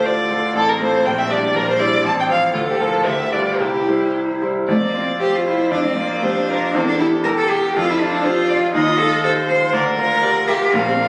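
A smooth, vibrato-laden violin carries the melody up front in this lively, spirited classical-period piano trio movement, taken quickly at 120 BPM in 2/4 with a rubato feel. A rich cello sings the second line with a soft attack, expressive portamento and its own vibrato, while a bright grand piano with long sustain and audible action noise supplies present, intimate accompaniment, and all three play throughout. This excerpt moves into a new section at 4.7 seconds, and its sound is steeped in wet scoring-stage reverb, captured on a phone in the room with added club reverb, compression and a dulled top end.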